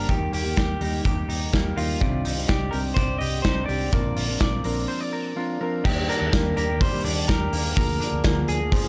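Youthful and breezy, this short jangly indie pop cut moves in a straight 4/4 over a dry room, with a loose, up-front acoustic drum kit (tight kick, medium-tuned snare, hi-hat and crash in a pumping small room) and a dark, round, foam-muted fingered bass supporting a slightly broken-up lo-fi guitar melody, a mellow fingered guitar accompaniment and bright, twangy direct-recorded arpeggios dressed in lush chorus and tape echo, pausing for a break at 4.9 seconds before opening onto Ebmaj7 at 5.8 seconds.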